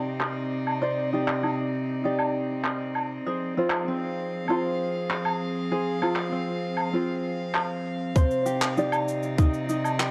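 Intimate and delicate, this folktronica excerpt in C minor moves at 98 BPM in a straight 4/4, with a thumb-plucked tenor ukulele playing light arpeggios through tape echo over the sustained chords of a reedy, gut-string quartet in period style, as the harmony shifts from Cmadd9 to Fm and back. Cabasa, handclaps and woodblock with brushes sit up front, their rolled-off top dulled by low-pass filtering, and the whole excerpt rests in light reverb and small room ambience. At 8.2 s a tight, tape-warm electronic kick drum enters prominently, then stops at 9.5 s.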